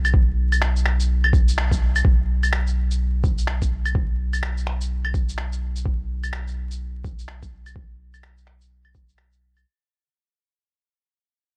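Nocturnal and wistful, this short future garage fragment is cut from a longer piece and moves in 4/4 with a swung sixteenth-note feel. A deep, round sine sub bass sits up front with a fast attack and sustained notes, pumping under sidechain compression. The electronic kick drum is muffled, thumpy and pitched down, overdriven and coated in vintage 12-bit sampler grit, and it also sits up front. An electronic shaker, claves and finger snaps share that crunchy, compressed sampler character and sound as if re-recorded in a small room. The whole band lands an accent at 1.6 seconds, and from 2.0 seconds the music fades out over a dry, gritty hardware sound with vinyl crackle and little reverb.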